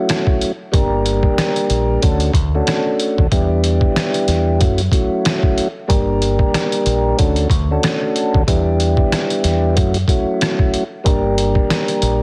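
A swung boom-bap hip-hop groove at 93 BPM drives this nostalgic, soulful excerpt, its sampler-style drum kit sounding muffled and pitched down, with a thumpy kick, medium-tuned snare, rim clicks and hi-hat, re-recorded in a small room and sitting up front. A clean tonewheel organ through a slow rotary speaker, given a cassette-tape tint, carries the chords from the start, cycling through F#m7, Gm, Dmaj7 and Em7, while a dark, round fingered electric bass joins at 0.7 seconds with punchy low notes. The whole mix carries light reverb and a heavily compressed radio-like sound.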